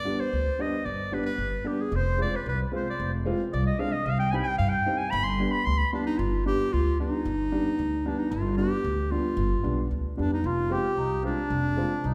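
A festive yet bittersweet klezmer excerpt in G phrygian dominant, moving at 113 BPM in a straight 2/4. A classical-style clarinet solos up front over pizzicato upright bass with thumpy gut strings and a dark, woody upright piano with short sustain. A reedy, vintage-sounding accordion with slow beating joins as a second line at 1.9 seconds, drops out at 6.0 seconds and returns at 10.5 seconds, as the chords move through G, F minor and C minor, all set in a wet, reverberant hall sound tuned to A4 = 437 Hz.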